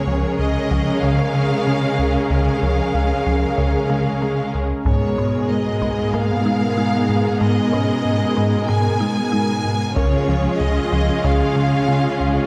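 Heard from further back in a wet recital hall, this tense, brooding stretch of hybrid orchestral and electronic film score sets a lush, focused violin melody over a softer second violin line, an intense viola section, a bold, brassy analog pad with chorus and an expressive cello section bass with portamento, while a smooth synth bass riff anchors the low end, a woody, nasal FM pluck plays chorused arpeggios, a very quiet felt-muted upright piano adds intimate texture, and a taiko ensemble played with hard sticks strikes in at 0.7, 4.9 and 10.0 seconds.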